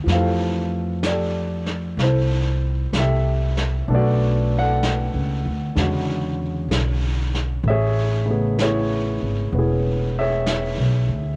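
A slow 64 BPM swing in 4/4 carries this romantic, tender jazz ballad in A major, cut from a longer piece, as brushes on a vintage kit, with their medium-tuned snare and hi-hat, sit softly in a small room with a rolled-off top. Up front, a pizzicato upright bass with steel strings gives a woody, growly low end, while an intimate grand piano, its action noise audible, comps through Fmaj9, Bm9, E13 and Amaj9. The piano and drums carry a cassette-tape tint, and the home recording on cassette stays close and dry, with little reverb.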